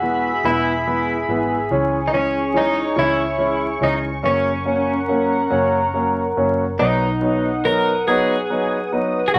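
In a slow, straight 6/8 at 47 BPM, this aching, dramatic pop ballad excerpt sets a bright, twangy twelve-string electric guitar melody with harmonic tremolo up front over a warm, intimate concert grand piano with audible action noise, a lush, detuned sawtooth unison pad with chorus, and a dark, foam-muted fingered electric bass, moving through E, C#m and F# before turning to B at 6.8 seconds, all in a moderate studio reverb with vinyl crackle.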